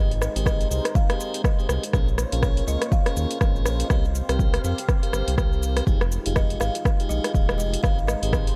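An overdriven electronic kick sits up front and deep, entering at 0.5 s to anchor this short afro house excerpt in 4/4 with a swung sixteenth-note feel. Around it, a layered deep house kit of cabasa, hi-hat and rim click, also overdriven and re-recorded in a small room, starts at 0.1 s. A round, detuned analog bass carries the low end with a fast attack and sidechain pumping. A moody pad with slow attack and chorus sits in the background and pumps as well. A piping tonewheel organ with key click plays stabs through a stopped rotary speaker and dub echo, while a woody, buzzing kalimba rings out the melody with tape echo. The chords move from Abmaj7 through Bbm7, C7sus4 and Fm9 before returning to Abmaj7, giving the dry, dark production an earthy, warm mood.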